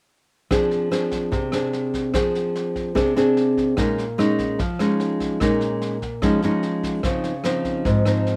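Melancholic and wistful, this short bossa nova excerpt in F minor at 147 BPM pairs an up-front, fingerpicked nylon-string guitar with a classical touch, moving through Fm6, Bbm7 and Dbmaj9 from 0.5 s, with a quieter, warm vintage brush kit of punchy kick, rim click and medium-tuned snare whose top end is rolled off, all in a moderate studio reverb.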